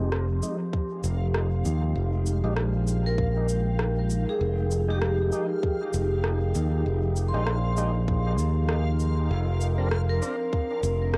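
Ambient dub at 98 BPM in F dorian, spacious and meditative, with a 16th-note swing and a cassette-made home-recording feel under moderate spring reverb, cut from a longer piece. A punchy, bright fingered electric bass sits up front with a tight electronic kick entering at 0.7 seconds, while a tape-warm electronic rim click and cabasa keep time and a metallic, ringing vibraphone played with hard mallets spins dub-echoed arpeggios. Behind them, a blurred, detuned granular cloud pad holds Fm9 before shifting to Bbadd9/F at 9.3 seconds, a lightly overdriven tonewheel organ with slow rotary speaker adds filtered, echoing stabs under a continuous filter sweep, and a reversed, dreamy swelling texture rises in from 0.5 seconds.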